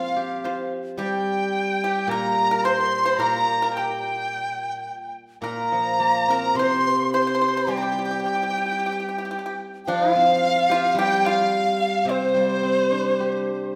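A large bamboo dizi leads this graceful, pastoral Chinese chamber piece, its hollow, airy tone carrying a buzzing membrane edge, with vibrato and tongued notes heard up close. A clear erhu plays a second line in the same register, its bowed sound focused and set further back, shaped by vibrato and portamento. A bright pipa, plucked with fingerpicks, adds a dry, percussive second line lower down. Underneath, an up-front steel-string zither provides silvery, ringing accompaniment across the broadest range of the ensemble. The music sits in a C shang mode at 108 BPM in 4/4, though the feel is rubato, and a recital hall reverb gives the ensemble a spacious, wet glow. This 13.8-second fragment is cut from a longer piece, with all four instruments playing throughout.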